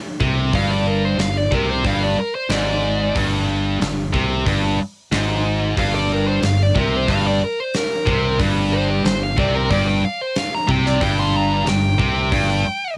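A dry, lo-fi home cassette recording captures this menacing, heavy hard rock fragment, cut from a longer piece and carried by a dark, smooth, overdriven lead guitar solo up front from 0.6 seconds. Beneath it, a tight, bright distorted riff guitar sits forward while a scooped high-gain guitar picks its riff in the background, joined by a growly fingered bass and a gated 80s drum kit with a tight kick, medium-tuned snare and hi-hat. At 5.8 seconds a double-tracked, sludgy guitar slips in very quietly to thicken the riff.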